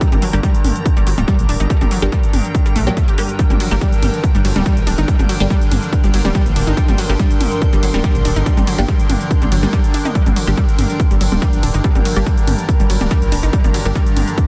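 Hypnotic and relentless, this driving peak-time techno cut runs at 142 BPM in a straight 4/4, anchored in G minor and drawn from a longer piece. A heavy, layered electronic kick sits up front with a tape-warm character, joined by a techno drum kit of smooth hats, ride cymbal and toms, all pumping with sidechain compression. Beneath them, a dark detuned saw bass rumbles and beats with saturated depth from 0.1 seconds, while an analog pluck riff, round and bright with a noise layer, chorus and delay, repeats between F#3 and G4. Further back, a muted, nasal dub chord stab flickers through a phaser, ensemble chorus and digital delay, and an overtone-sweeping drone with moving, resonant harmonics holds low under its own reverb. A cloudy, evolving granular pad blurs the upper register, and the whole is set in a digital ambience with a dense, heavily limited modern master.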